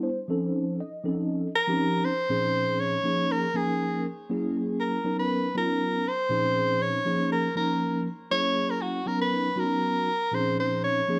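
A clear soprano saxophone carries the melody up front from 1.6 seconds, played in a jazz solo style with light vibrato, subtone, soft attacks, scooped notes and a smooth top. Beneath it, a mellow tine electric piano with analog chorus provides accompaniment from the start, sounding clean and heard through its built-in speakers, as the harmony cycles through chords such as Bbm11, Eb9sus4, Gb9 and Bmaj9 after 2.3 seconds. This nocturnal, funky swing jazz excerpt sits in a wet large-studio reverb blended with small-room ambience.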